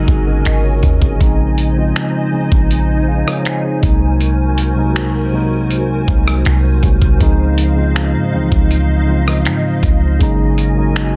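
Longing and moody, this contemporary R&B excerpt in Bb minor moves at 80 BPM, with an up-front, mellow tine electric piano and a deep, boomy 808-style bass holding down Bbm11 and Dbmaj9 harmony beneath a gritty, compressed sampler-style kit of finger snaps, hi-hat, rim click and a thumpy kick, with soft clipping on the snare, while a hollow, warbling pad pumps under its chorus and a full-bodied fingerpicked nylon-string guitar with delay appears only in the first second.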